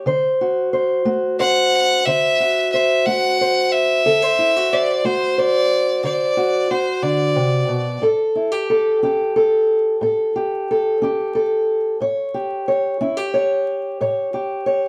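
A clear, intense bowed fiddle with light vibrato sings up front from 1.4 to 8.0 seconds over a dark, woody, boxy fingerpicked archtop guitar on old strings, giving this rollicking, soulful acoustic country blues in a straight 12/8 a live, one-room feel, with moderate reverb, vinyl crackle and harmony moving from D7 to A7.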